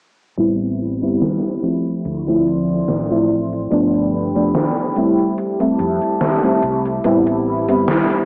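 Vaporwave excerpt with a nostalgic, melancholic mood, where a lush, dreamy FM electric piano with a soft pad layer sits up front through analog chorus and tape echo, a warbling, lo-fi tape-like pad enters at 1.0 seconds with slow-attack chords, a round, dark fretless bass hums beneath with tube saturation, and a gated 80s drum machine taps hi-hat and gated-reverb snare, all softened by a small-speaker sound, a lush hall reverb and a filter sweep over chords moving from Am9 through Dm7, G7 and a rootless Fmaj9 back to Am9.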